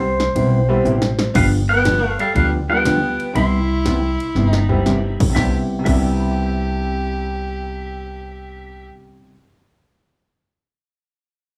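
A small, moderately ambient room frames this playful, swinging western swing fragment at 120 BPM in C major, which opens with a compressed, fingerpicked pedal steel solo of slide volume swells over clear upright piano with audible action noise, woody pizzicato upright bass, a dark hollow-body jazz guitar and a punchy, up-front analog drum machine, until a drum fill hands the melody at 1.4 s to a bright, twangy lap steel, alongside a nasal, earthy bowed fiddle with light vibrato, while the drums drop out at 6.1 s.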